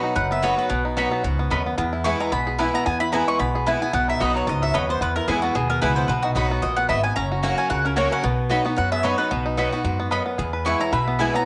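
Lively, rustic bluegrass at a brisk 223 BPM in B major with a swung feel, where a twangy fingerpicked banjo and a woody double-string mandolin share the melody over a bright, boxy parlour guitar up front, a second mandolin adds round stabs, a thumpy gut-string upright bass plucks the low end, and from 7.7 seconds a mellow, nasal slide resonator guitar plays a second line in the background, all set in a small room with spring reverb on a lo-fi home cassette recording of a passage cut from a longer piece.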